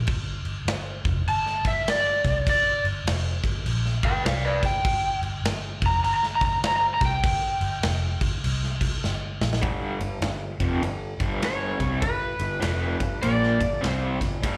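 This excerpt sounds like a live club gig heard through the venue's PA, with a little room reverb and a gritty, raunchy edge to the blues rock and southern rock playing. A big, acoustic rock kit with a punchy kick, medium-tuned snare and bright crash and ride cymbals swings beside a vintage fingered electric bass whose foam-muted, round tone sits low and dark under the band. From 1.3 seconds an overdriven slide guitar, played with fingerpicks and sent through slapback echo, takes an up-front solo high in its register. A drum fill at 9.0 seconds brings a G minor chord, resolving to G major as the second section begins. At 9.6 seconds a raw garage guitar joins with a lo-fi, double-tracked riff, its overdrive colored by tremolo and slapback echo.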